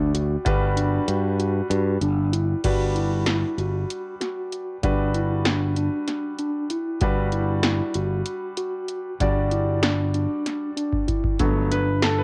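In a straight 7/8 at 192 BPM counted in eighths, this driving progressive instrumental in G major opens on a Gmaj7, with the analog drum machine's kick and snare dropping out from 0.8 to 2.6 seconds and a drum fill arriving at 10.9 seconds. A growly, punchy fingered electric bass sits up front beside the dry drum machine's deep kick and metallic hats, while a mellow tine electric piano plays arpeggios and an intimate, brilliant grand piano with audible action noise and long sustain supplies the accompaniment. The home cassette recording carries little reverb, and tape colours the pianos and drums throughout this bright passage cut from a longer piece.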